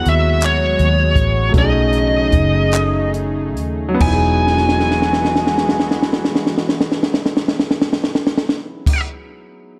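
Swaying in a slow six-eight pulse that slows through the opening and pauses for a break at 2.7 seconds, this tender R&B excerpt puts a biting, overdriven lead guitar with slapback echo up front over a baby grand piano of long sustain, a smooth chorused sawtooth pad in the background, a round, foam-muted fingered electric bass, and a compact cocktail drum kit with a high-tuned snare, punchy kick, crash, hi-hat and handclaps that plays a fill from 4.5 seconds, set in a small room with light reverb.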